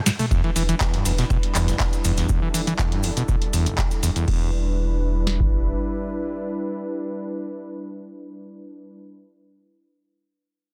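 A squelchy, overdriven acid bass riff leads this gritty, driving acid house excerpt at 121 BPM in E minor, its resonant sawtooth tone pushed through distortion, tube saturation and delay while a filter sweep runs across it from 0.3 to 4.3 seconds, with sidechain pumping. Two booming analog drum machines supply a deep kick, crisp snare, handclaps, metallic hats, toms and crash, joined by a very quiet, dry acoustic funk kit on ride and snare and a grainy cabasa in the background, while a round sine sub bass holds E1 beneath. A smooth, warbling vintage pad with chorus and sidechain pumping sustains an Em7 chord and carries on alone after the rest drops away, lasting to 9.0 seconds, all under light reverb in a dense, heavily limited modern master.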